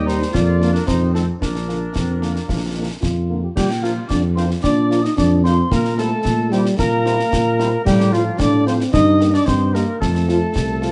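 In a straight 2/4 march feel, this rousing, spirited military-style wind band piece sets a mellow, vibrato-tinged cornet melody, distant and roomy in the background, over a tight woodwind-section second line, a dark French horn accompaniment, and close, dry concert snare, bass drum and clash cymbals with dusky cymbal tone. A trombone section holds sustained chords until 3.5 s, and at 3.6 s a smooth-topped euphonium and a pure, hollow piccolo with a soft attack join on second lines, while an up-front tuba anchors the bass throughout. The band is heard from further back in a lightly reverberant room, with a gently rounded top end.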